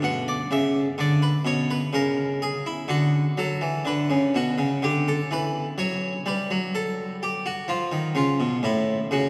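A solo harpsichord in the Italian style carries this short passage from a baroque-style suite movement, its plucked tone full and mid-forward from two sets of strings. The mood is radiant and serene, and the triple-metre pulse bends freely with rubato. The harmony settles on a minor chord, then briefly drops away into a chordless moment near 1.9 seconds before returning and moving through richer, coloured chords toward the close. The instrument sits up front, yet a cathedral's long, wet reverb places the listener further back in the room, so each note rings into the stone. The passage ends abruptly at 9.3 seconds, cut from a longer piece.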